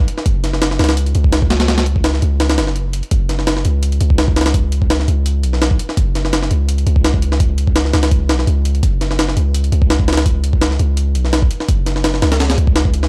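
A jungle sampler-style drum kit and a long sustained 808-style bass arrive together at the start of this dark, nostalgic drum and bass excerpt, running at 168 BPM in 4/4 with a light swing on the sixteenths. The compressed, pitched-up drums sit up front with a thumpy kick, a high-tuned snare and hi-hat, overdriven and gritty with a small room ambience. Alongside them, the deep sine bass holds long decaying tones between F#1 and C#2, colored by tube saturation, while the whole recording carries a dry hardware and cassette tape character.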